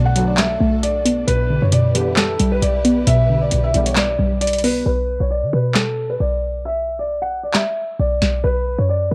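A dusty, home-made cassette sound with light reverb and a small-room feel wraps this dark, hard-hitting trap fragment, cut from a longer piece and riding a heavy half-time groove. A booming analog drum machine sits up front with a crisp snare, handclaps and metallic hi-hats, while a short, punchy 808-style bass with a sine body and a noise layer anchors the low end. A detuned, warbling pluck with chorus and a filter sweep carries the accompaniment over Bm7 and Em7/B, beneath lush bowed strings holding vibrato chords in the background and distant, roomy brass stabs. Over it all, a soft, felt-muted upright piano plays an intimate melody up front in the mix. At 4.9 s the track drops into a break on B minor, where the pluck and strings fall away and the piano and bass carry on to the end at 9.1 s, the drums having stopped at 8.3 s.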